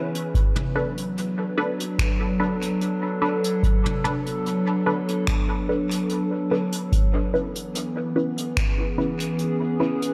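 A straight 4/4 pulse at 73 BPM carries this deep, hazy ambient dub excerpt in B dorian, anchored by a dry, deep electronic kick up front from 0.3 to 8.7 s while a natural-sounding brushed jazz kit of finger snaps, hi-hat and toms trails dub echo. A warbling, nostalgic lo-fi pad of detuned square, triangle and sawtooth tones sustains slow-attack chords through chorus and phaser, as a muted, evolving filtered dub chord stab with a sub octave plucks short, phased hits soaked in cassette grit and dub echo. Everything sits in a moderate echo-chamber reverb, with the harmony moving from Bm7 to C#m7 at 6.9 s.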